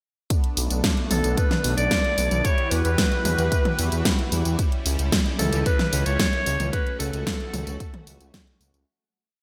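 A growling, raspy alto saxophone with vibrato plays hook-phrase motifs through vintage 12-bit sampler grit and digital delay over a driving, nostalgic synthwave piece in B minor at 112 BPM, where a punchy electronic kick, a pop drum kit with a fat gated-reverb snare, hi-hat, tambourine and toms, a deep, detuned saw bass galloping in sixteenths and an airy, mellow supersaw pad with ensemble chorus both pumping to the sidechain, all set in a lush hall with bright 1980s-style digital production before fading out from 6.0 seconds.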